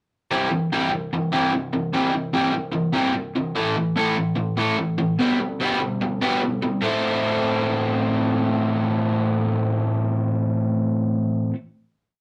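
This is a short rock piece for solo overdriven electric guitar, swaggering and brooding, in A minor at 147 BPM in a straight 4/4. The guitar plays alone from 0.3 seconds to 11.5 seconds, picked and palm-muted in steady eighth notes across a range from A2 to A4. Its tone is overdriven and compressed, double-tracked and placed up front. A pre-chorus moves through C, A5 and G/B before settling on a final A minor chord at 6.8 seconds, which rings until 10.1 seconds. The sound is a rough rehearsal-room recording with moderate studio reverb.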